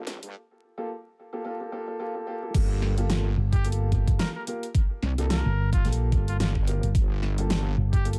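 This playful, funky glitch hop excerpt in G minor at 109 BPM, with a 16th-note swing, opens on a heavy, wobbling sawtooth bass that sounds saturated and up front, while a short drum fill from an overdriven dubstep kit kicks off a build-up over a Gm9 chord. A dark, boxy grand piano adds stabs with sidechain pumping and delay as filter sweeps run through the opening seconds, and the kit brings a huge snare, bright hats and crash cymbal. The drop lands at 2.5 seconds with a knocking, overdriven electronic kick pushed to the front. Soon after, a round, punchy fingered electric bass joins in the low register, and at 3.5 seconds a clear trumpet enters with a smooth top, light vibrato and a classical-style solo line touched by delay. The mix is dry, with little reverb, and a layer of vinyl crackle runs through it all.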